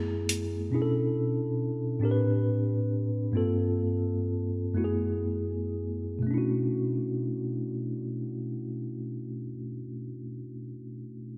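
A mellow, clean tine electric piano carries this slow, yearning and sultry six-eight R&B excerpt, playing up front through its built-in speakers and moving through lush minor-eleventh chords from F#m11 to Bm11, Am11 and Gm11 before returning. A gritty, compressed sampler-style electronic hi-hat appears only briefly, from 0.3 to 0.5 s, and the tempo then slows between 0.7 and 6.3 s. A lush hall reverb and bright 1980s-style digital production frame the music as a second section begins at 6.3 s.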